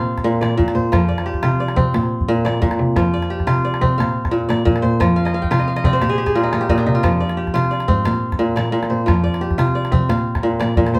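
Bright, fingerpicked kora arpeggios ring out up front from the first moment, alongside a bowed cello bass line with biting vibrato and a small, saturated calabash in this hypnotic, reflective West African string piece at 118 BPM in a straight 12/8. The kora alternates between Bb and F shapes before a crisp fill at 5.2 seconds carries it into a brief Bb13sus4 and Fm passage, while the single cellist's airy, boxy tone adds intensity underneath. The whole fragment, cut from a longer performance, sits a little back in a reverberant studio room.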